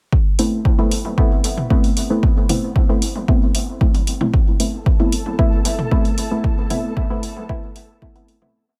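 Hazy and nocturnal, this short dub techno piece in A minor moves at 114 BPM on a punchy four-on-the-floor electronic kick that sits up front, with programmed open hi-hats and a backbeat. A deep, mellow chord stab plays one Amadd9 shape moved in parallel in dotted rhythms, its soft evolving tone shaped by a filter sweep, chorus, phaser and dub echo, while tape-toned electronic toms echo in the background with sidechain pumping. At 4.7 s a flickering, grainy granular texture enters on a held high note with a slow attack and its own reverb, and the dry mix fades out from 5.7 s.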